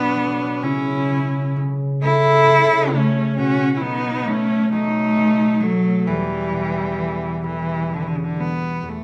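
A moderate recital hall reverb surrounds this short cut from a longer piece, with a faint mains hum sitting beneath the music. It is a Celtic folk slow air in 6/8, played with a free rubato feel and a mournful, longing mood. A single bowed cello carries the melody up front, its tone rich, nasal, focused and a touch boxy, coloured by vibrato. Beside it, a fingerpicked concert harp provides ringing acoustic accompaniment up front, warm in its low register. A lone bowed viola adds a smooth, even second line from a distance, with its own vibrato, before stopping at 7.9 seconds while cello and harp carry on to 9.0 seconds. The harmony moves from Bm into a chordless stretch, then settles through B7 onto Em.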